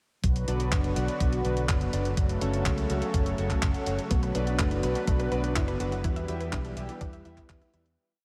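A thumpy, sampler-style kick re-recorded in a small room drives this short, danceable and bittersweet italo disco piece in a four-on-the-floor pulse, alongside handclaps and closed hi-hats from a clean 12-bit drum machine and a bright, amped fingered bass with an envelope filter and tube saturation playing punchy eighth notes. A thick, nasal unison pad holds chorused chords through a Bm, F#m, Bm and Em progression, while a glossy, retro polysynth adds mellow off-beat stabs with analog delay. From 4.1 seconds a detuned sawtooth pluck with ring modulation and 12-bit sampler grit repeats a 16-step arpeggio in the background, all bathed in a huge, dreamy reverb as the piece fades out from 5.4 seconds.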